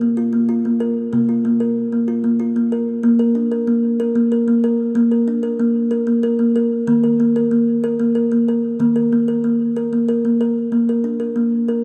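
A lone kalimba opens this meditative, hypnotic world piece in 6/8, its short, thumb-plucked notes sounding woody and hollow as they sit up front across its lower and middle range. A diffuse ambient delay trails the kalimba, and a moderate church-like reverb gives the dark production a spacious glow. At 3.0 s the music moves into a new section, and the kalimba continues alone until the fragment ends at 11.8 s.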